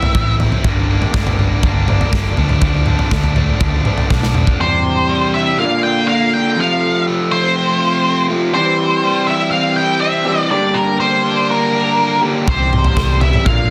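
Indie rock with a moody, restless edge, this cut from a longer piece moves at a steady straight pulse in four. A bright, overdriven garage guitar plays its picked riff throughout, while a big, up-front acoustic drum kit with a punchy kick, a medium-tuned snare with soft clipping, and toms drives the opening alongside a round, hollow-body bass, capped by a drum fill at 4.1 seconds. At 4.6 seconds the drums and bass stop and a dark, slightly broken-up guitar through a small old amp joins with its own riff, touched by subtle chorus, as the octave-fuzz lead takes up a dark, distorted melody with slapback echo. The drums and bass return at 12.5 seconds to close the passage over the chords. Light reverb sits around the parts, and the master is dense and heavily limited in a modern way.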